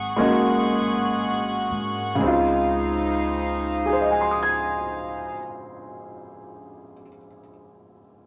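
A smooth, vintage-toned grand piano with a deep bass register sits up front in this tender, late-night jazz ballad fragment, entering just after the start and carrying on until 8.3 seconds. Beneath it, a floating, soft-attacked string section plays sustained bowed chords sul tasto, and a woody pizzicato upright bass gives quiet support; both stop at 5.3 seconds. The slow swing eases back at the opening over an Ab7sus4 before settling onto a Dbmaj9 at 2.2 seconds, all in a moderate studio reverb.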